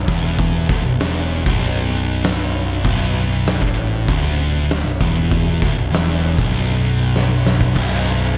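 A sludgy, brooding stoner and doom metal excerpt in B minor at 98 BPM opens with two thick, distorted fuzz guitars playing a low riff, one up front and one in the background, over a growly overdriven picked bass and an oversized low-tuned drum kit with a fat snare, punchy kick, gritty saturation and a rolled-off top, whose fill at 7.1 seconds gives way to a very quiet, swarming, detuned drone with ring modulation that appears at 8.1 seconds in a small room.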